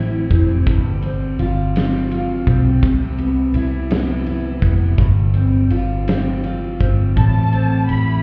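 A dramatic, melancholic pop ballad in a slow 6/8 at 55 BPM, this short excerpt moves through Am, G7sus4 and Cmaj7 before returning to Am. An up-front, full-bodied jumbo acoustic guitar, double-tracked with audible finger squeak, carries the accompaniment over a round, foam-muted vintage electric bass, while a huge arena kit enters at 0.3 seconds with a fat snare, tight kick and bright ride cymbal. At 7.2 seconds a lush, dark violin section arrives with expressive vibrato, and the whole mix sounds muffled, as if heard through a wall, with a touch of club reverb.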